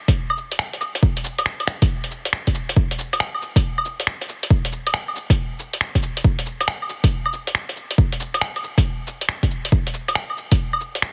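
The recording has a squeezed, heavily compressed radio-like sound set in a digital ambience, which gives this short fragment of a longer future garage piece a melancholic, wistful cast. A punchy, layered electronic kick drum sits up front, its overdrive adding grit to each hit. Beside it, a lo-fi sampler-style kit of cabasa, claves, finger snaps and hi-hat sounds pitched down, muffled and tape-warm, with its own compression flattening the percussion into a dusty haze. Both drum parts enter at 0.1 seconds and carry a loose, swung feel in 4/4, repeating the same section throughout. The kick drops out at 10.6 seconds, leaving the sampled kit alone until it stops at 11.1 seconds.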